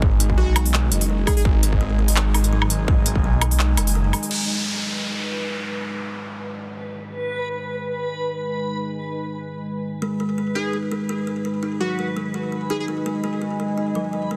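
A half-time drum and bass groove with a light swing on the sixteenths opens this tense, cinematic fragment. It is driven by a distorted, tape-warm electronic kick and a crisp, layered kit of hi-hat, handclaps, woodblock and crash cymbal, both sitting up front in a small room. Beneath them a thick, swirling detuned saw bass with phaser anchors the opening drop, while a deep, moody ambient pad holds evolving chords with chorus, reverb and sidechain pumping. A woody kalimba rings out arpeggios through tape echo, and a punchy, catchy unison lead adds brief melodic phrases soaked in dub echo. At 4.3 seconds an electronic downlifter takes over from the beat and bass and a filter sweep starts on the pad, and from 5.0 seconds a reversed, dreamy granular texture swells in. The kalimba returns at 10.0 seconds and the lead follows at 10.6 seconds, set in light digital ambience within a dense, heavily limited master.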